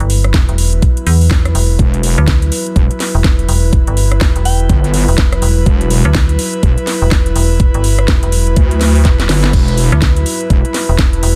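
Bass house with a gritty, bouncy mood, this short cut from a longer piece rides a swung sixteenth-note groove over a single Emadd9 chord. A metallic FM bass sits up front alongside a knocking, tape-toned electronic kick, the bass pumping against the kick with tube saturation. From 1.8 seconds a heavy wobble bass joins, its detuned, overdriven square-and-sine tone thickened by chorus. A garage drum kit supplies a cracking snare, metallic hats, rim clicks and crash in a studio reverb, with a drum fill at 8.8 seconds. Beneath it all, a very quiet, moody sawtooth pad holds dark sustained chords, while an airy, breathy pad with a noise layer shimmers higher up and pumps in time. A soft, warbling synth bell sounds a single G5 at 4.5 seconds through chorus and digital delay, in a dense, heavily limited modern master.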